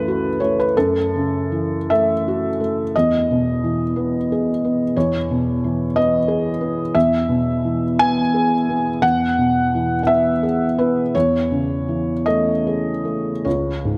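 A felt-muted upright piano plays alone from 0.0 to 14.0 s in this wistful, melancholic neoclassical minimalist excerpt, its soft, intimate tone sitting up front with audible action noise as it moves rubato in 6/8 at about 49-62 BPM (dotted quarters), spanning C#2 to G#5 through F#m7, Emaj7 and Amaj7/E before reaching C#5 at 13.5 s, tuned to A4 = 442 Hz and framed by a moderate concert hall reverb of 2.2 s captured with close, detailed microphones.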